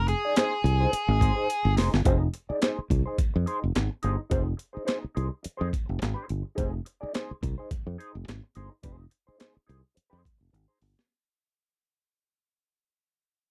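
Funky and sly, this 106 BPM funk excerpt in F dorian swings its 16ths over a dry, close 1970s-style studio sound, as a gritty, compressed breakbeat sampler-style kit of thumpy kick, snare, hi-hat and handclaps joins a growly, punchy fingered bass and a dark, clean wah-touched rhythm guitar on Fm7, while a fuzzy, picked octave-fuzz lead guitar sounds briefly on Ab4 until 1.7 seconds, and drum fills at 1.5 and 10.5 seconds bracket a fade-out that begins at 2.1 seconds.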